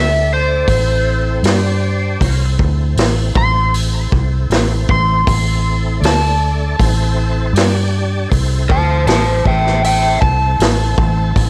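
A light reverb gives this smoky, brooding blues rock and southern rock excerpt a close, vintage feel, with a punchy kick, medium-tuned snare and hi-hat on a rolled-off acoustic kit joining at 0.7 s over a dark, round, foam-muted fingered electric bass, all at a steady 79 BPM in 4/4 and A minor. An overdriven slide guitar, played with fingerpicks and coloured by plate reverb and tape echo, carries a solo melody from the start to 11.5 s. Beneath it, a thick, gritty tonewheel organ holds sustained chords through a slow rotary speaker with chorus vibrato and key click, moving through D5, Am and G5.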